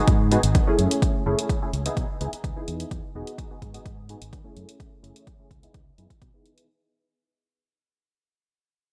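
Filtered disco house at 127 BPM with a groovy, sensual mood, this short excerpt sets a nasal, detuned polysynth comp with chorus and phaser over a round fingered electric bass under a filter sweep, a punchy overdriven electronic kick up front, and gritty electronic hi-hats, all pumping to the sidechain except the kick, as seventh and ninth chords cycle from G#m7 through C#m9 in bright 1980s-style digital production with light reverb while the whole passage fades out across its 6.7 seconds.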